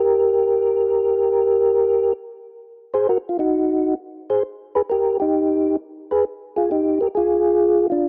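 Jazz with a smoky, late-night mood, this brief passage taken from a longer piece moves at 132 BPM in 4/4 with a swung eighth-note feel. A single tonewheel organ carries the whole 8.1 seconds, playing in the range from D4 to C5. Its tone is soft and flute-like, with a clean percussive attack from second harmonic percussion. A slow rotary speaker and chorus vibrato add gentle movement to the sound. The harmony opens on a rootless Eb, then shifts through Ab5, Eb and Ebadd9 before arriving on Fm at 7.2 seconds. The recording is dry and close in a 1970s studio style, with little reverb and the organ placed up front.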